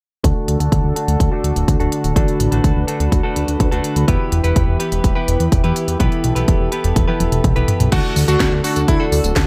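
Italo disco at 125 BPM in a straight 4/4, nostalgic and bittersweet, this short cut from a longer piece moves from D to E minor and back to D over a detuned, chorused analog pad, a fat sawtooth bass with a moving filter sweep, and a punchy layered electronic kick. A clean, direct-recorded electric guitar plays stabs roughened by vintage 12-bit sampler grit, low-pass filtering and digital delay, with a filter sweep running until 7.9 s. A house kit adds a cracking snare, crisp hats, tambourine, crash and toms in gated reverb, with a drum fill from 7.0 s, before a bright, clangy electric grand piano carries a brief delayed melody from 7.9 s inside a digital ambience.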